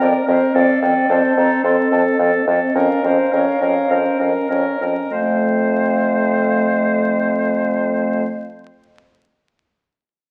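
All five wind players begin together, with an airy silver flute carrying the melody from the background, a vibrato-tinged oboe on the second line, and a clear clarinet and a soft-edged French horn filling in the accompaniment above a mellow bassoon bass that sits up front. This spirited, cheerful classical-period movement for wind quintet has a rubato feel, slowing over its first 5.1 seconds as the harmony darkens briefly to a minor colour at 2.8 seconds before settling back home when a new section begins at 5.1 seconds. The short passage, cut from a longer piece, sounds as if it is heard through a very old 78 rpm record, its crackle layered over the roomy reverb of a recital hall.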